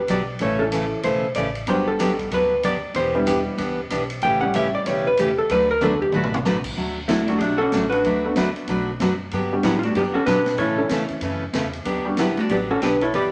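A briskly swung 188 BPM country western-swing groove in D major sets a down-home, playful mood in this excerpt, where a dark, clean hollow-body jazz guitar takes the lead with a solo until 6.8 s over a thumpy gut-string upright bass, a swinging big-band drum kit with a punchy kick that plays a fill at 5.8 s, a warm dreadnought acoustic guitar, and a clear, short-sustain upright piano, before a second compressed hollow-body guitar line joins in the background at 7.1 s, all set in a moderate large studio reverb.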